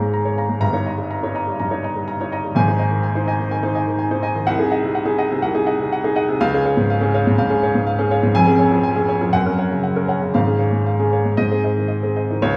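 Played with a rubato feel in 4/4 around 123 BPM, this fragment of a classical virtuoso piano study moves with a sparkling, heroic spirit. A solo grand piano carries the whole passage from 0.0 to 12.6 seconds, its tone warm, smooth and vintage, placed up front and spanning from a deep F1 to a bright Bb5. The harmony opens in Ab major over Bbm7/Ab and Eb7/G, then turns toward Db major from 4.5 seconds through Ab7/C, passing Db, Gb and Db/Ab before settling on Ab at 11.4 seconds. A wet recital hall reverb with a 1.7-second tail wraps the piano, along with a studio ambience. The instrument is tuned to A4 = 442 Hz.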